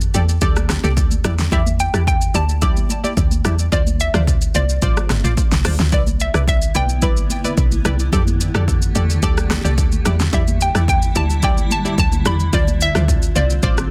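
Amapiano at 109 BPM with a relaxed, warm mood, this short cut pairs a woody log drum bass and an overdriven, up-front deep house kit with punchy kick, fat snare and metallic hats, while soft, high-tuned congas sit in the background, warbling chord stabs with chorus, phaser and delay move through F69, Em7, Dm7 and Cmaj9, a hollow square pluck melody enters at 1.5 seconds, and a cloudy granular pad with sidechain pumping blooms in at 6.7 seconds, all in a dry, dense, heavily limited mix.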